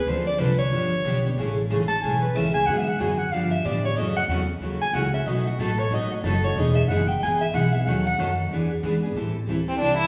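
A mellow, forceful soprano saxophone solos up front in a roomy space over two bright, full-bodied picked steel-string acoustic guitars (one with audible finger squeak) and a woody pizzicato upright bass in this fiery, virtuosic jazz manouche cut at 185 BPM with a swung feel, before a warm, bowed violin with vibrato and portamento steps in close at 9.7 seconds, all set in a wet recital-hall reverb.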